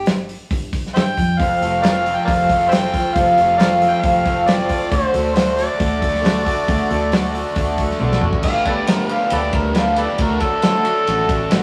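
Folk rock with a heartland rock drive, this hopeful, nostalgic excerpt moves at 136 BPM in G mixolydian, led by a gritty, overdriven harmonica sitting up front with light vibrato and tongue slaps, over a foam-muted fingered electric bass and a dry 70s drum kit with dark cymbals and a tight kick. At 1.4 seconds a bright, boxy picked acoustic guitar enters with a swing feel, alongside a double-tracked cranked stack guitar playing a riff in the background. After a drum fill at 8.0 seconds, the harmonica takes a solo from 8.4 seconds as the chords shift to Gadd9 and D, all captured with a rough rehearsal-room quality and moderate stone room reverb.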